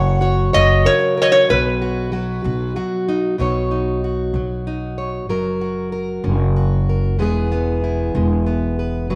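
Acoustic folk in a peaceful, hopeful mood at 63 BPM in a straight 6/8 and B major, where a bright, nasal metal-body resonator slide guitar sings the melody with fingerpicks up front until 2.7 seconds, over a warm fingerpicked plugged-in steel-string acoustic guitar and a woody, thumpy pizzicato upright bass on gut strings that carry on through 9.2 seconds, the harmony moving from F# and B to Badd9 at 3.4 seconds and on to F# and E, all set in a moderate echo chamber reverb as a short cut from a longer piece.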